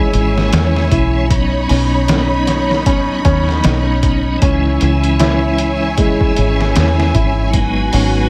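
Trip hop at 77 BPM in C# minor with a swung sixteenth feel, smoky and melancholic, where a muffled, pitched-down sampler-style drum kit with a thumpy kick and overdrive arrives at 0.1 s beneath a round, punchy dub electric bass sitting up front, a piping, scooped tonewheel organ with key click, slow rotary speaker, tremolo, tape echo and 12-bit grit, a lush bowed string section with a smooth top and its own sampler grit, and soft felt-muted upright piano arpeggios with audible action noise and digital delay, the harmony moving through C#m, Badd9 and G#m7 over light reverb and vinyl crackle in this brief fragment of a longer piece.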